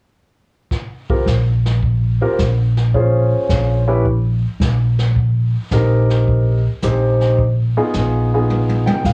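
Worn, warbling cassette tape with pitch drift and small-room ambience colors this sophisticated, warm jazz piano trio fragment in Eb major at 108 BPM with a swung 4/4 feel, where distant, roomy brushed drums with a punchy kick enter at 0.7 seconds, a deep, natural concert grand carries the melody up front, a woody, thumpy pizzicato upright bass joins at 1.3 seconds, and a drum fill arrives at 8.5 seconds.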